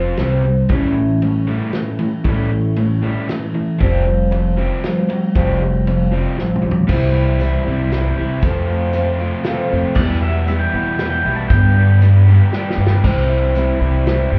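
This short cut from a longer folk rock and heartland rock track opens with a shimmering, octave-doubled twelve-string acoustic guitar, a dark, overdriven electric guitar riff that is double-tracked and up front, and a woody pizzicato upright bass, with a natural country drum kit joining at 0.2 seconds on its punchy kick and medium-tuned snare. Moving at 117 BPM in a straight 3/4, the mood is nostalgic and warm, the chords turning from C5 through A7 to Fsus2 before a drum fill carries the music into a new section at 6.9 seconds. There a smooth, very quiet tonewheel organ adds sustained chords with key click and a slow rotary speaker, while a bright, jingly tambourine sits close and dry far down in the mix. At 10.0 seconds a clean pedal steel guitar, played with fingerpicks and slide, offers a brief high second line with volume swells until 12.0 seconds, over a progression moving from C through F, Em and G. 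The whole recording has a light club reverb and sounds muffled, as if heard through a wall.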